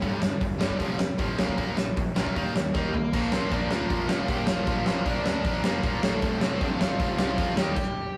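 A punchy kick and fat snare from an up-front, dark-toned rock kit in a big room open this aggressive, urgent punk rock excerpt, with two bright, picked electric guitars grinding out the riff in the background (one distorted, compressed and scooped, the other overdriven) over a growly, fuzz-laden picked bass. During a drum fill, an overdriven semi-hollow guitar with a warm, hollow-body tone takes up the melody at 2.9 seconds, leading into a new section that moves through Bb, F and Eb chords. The riff guitars, bass and drums drop out in a stop at 7.8 seconds while the semi-hollow guitar carries on to the end, and the rough rehearsal-room sound carries light reverb and a saturated edge.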